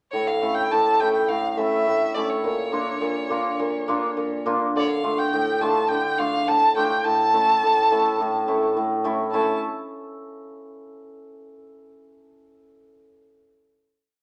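From the first moment, a rich, smooth bowed violin sings an ornamented modal melody with vibrato over a shimmering, ringing hammered dulcimer playing off-beat triad chords through A, Bb, Dm and back to A, giving this short, festive yet soulful klezmer piece in A phrygian dominant at 104 BPM an up-front intimacy in a wet studio reverb before it settles on a final chord at 9.3 seconds.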